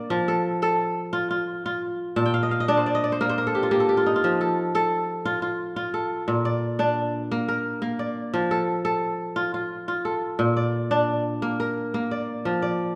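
A solo kora, fingerpicked and sitting up front, rings out crisp across a span from Bb2 to A5 in this flowing West African traditional excerpt at 117 BPM in a straight 12/8. Its harmony alternates between F and Bb, with a fill from 2.2 to 4.2 seconds, and the acoustic tone carries a warm glow. A wet recital-hall reverb lends the short passage, cut from a longer piece, a spacious afterglow.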